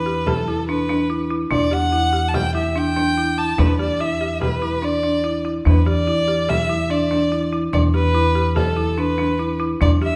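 Set in an uneven five-beat meter with a straight feel, this contemporary chamber piece has an urgent, hypnotic pull across its roughly ten seconds, cut from a longer work and resting on a single Em7 chord. A rich, focused bowed violin carries the melody up front, one player with vibrato ranging between A4 and A5. Beneath it, a folk marimba struck with medium hard mallets spins arpeggios from D4 to G4, its hardwood bars sounding dry, rustic and percussive with a vintage, band-limited character. An acoustic upright bass plucks pizzicato on a low E2, its steel strings sounding woody and warm. A warm frame drum sits in the background from 0.3 seconds, and the ensemble is placed in a moderate recital hall reverb.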